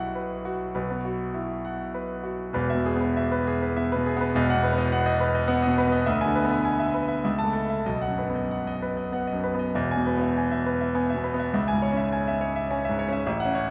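A bright, brilliant concert grand sits up front in a cathedral-like reverb with a long 4.9-second tail, its deep bass and natural tone ringing through a church or concert hall. This romantic character piece for solo piano, in E major and 3/4 at a rubato 92-109 BPM, feels hopeful and passionate, spanning E1 to A5. After a brief opening on B5, a new section settles on E at 2.5 s and moves through B/E, E7/D, A/C#, B and E before reaching C#m at 11.5 s in this short cut from a longer piece.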